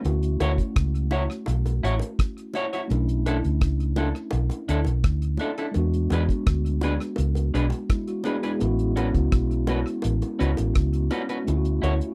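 A mellow tine electric piano with tape echo, a round, dark, foam-muted fingered bass and a damped 70s drum kit with a tight kick, hi-hat and rim click, also touched by tape echo, open this smooth, bittersweet lovers rock reggae fragment at 84 BPM, soon joined by high-tuned bongos played with hard hands. From 0.4 seconds, an electric guitar through a small old amp adds bright, twangy, slightly broken-up picked stabs. The chords move from Dmaj9 through Bm11 and E7 to A69 in a dry, close 1970s-style studio sound, with bass, drums and guitar up front.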